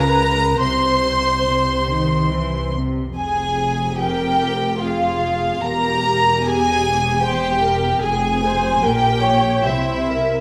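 In a flexible, rubato triple metre, this yearning, melancholic passage from a slow romantic movement for string orchestra opens on a bare moment before settling into minor harmony, with a closing turn toward C7. An intimate violin section carries the melody up front with light vibrato and a sul tasto touch, while a second violin line floats, pure and distant, beneath it. Lush, woody violas, dark cellos and double basses fill out the accompaniment and bass, all bowed sul tasto and set in a wet scoring-stage reverb.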